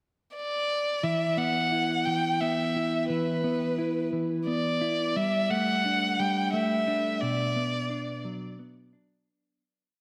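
Set in a straight three-beat lilt, this short, complete post-rock piece carries a melancholic, brooding mood. A single bowed violin enters at 0.4 s in a brief pickup, playing a focused, vibrato-rich melody built from hook-like motifs, its smooth top sitting up front. At 1.0 s a clean, compressed electric guitar joins with picked arpeggios, its tone warm and close beneath the violin's line as the harmony moves from E5 through Gsus2 to Bm. Both instruments carry slapback echo and analog delay, and the whole sound is bathed in a lush hall reverb that gives it a big arena scale. A fade-out begins at 7.2 s and carries the piece to its close.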